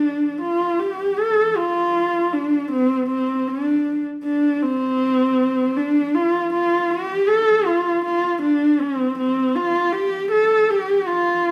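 Windswept and solemn, this short excerpt cut from a longer traditional Mongolian piece moves at a measured 79 BPM in a straight 4/4, set in D yu mode. A single horsehead fiddle carries the whole passage alone from 0.0 to 11.5 seconds, its bowed horsehair strings giving a husky, warm voice that sits up front. The player leans into vibrato and portamento, shaping the line expressively within a range from C4 to A4. A brief opening phrase gives way at 1.2 seconds to a longer second passage that runs to the end. The fiddle rings out in a stone room with a wet reverb about a second long, capturing the feel of a live performance in one space.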